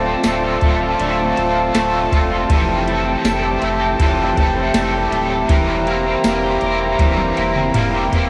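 A soft vintage rhythm box with a deep kick and tonal snare sets a straight 80 BPM pulse in 4/4 for this hazy, ethereal dream pop excerpt, under a bright, up-front overdriven guitar with harmonic tremolo and chorus, sustained chords from a present brass section, picked arpeggios on a slightly broken-up electric guitar with tape echo, and a thick saturated sub bass, while a very quiet bell-like celesta rings briefly from 1.0 to 2.4 seconds, a drum fill arrives at 7.0 seconds, and the chords move from Dm7 through Fmaj9 to C7/E, all in a lightly reverberant home cassette recording.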